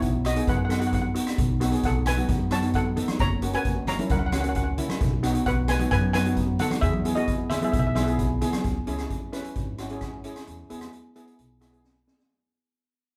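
A bouncy, carefree calypso opens with a bright, shimmering lead steel pan carrying the melody over boxy cello pans, a growly pizzicato upright bass, and an up-front street-band drum kit with a high-tuned snare, boomy kick, hi-hat and rim clicks. Thick-skinned, vintage-sounding congas join in the background at 2.1 seconds, and the band, playing live together in a large studio with moderate reverb, begins to fade at 8.6 seconds, shortly after the lead pan falls away. A drum fill at 11.8 seconds closes this cut from a longer piece.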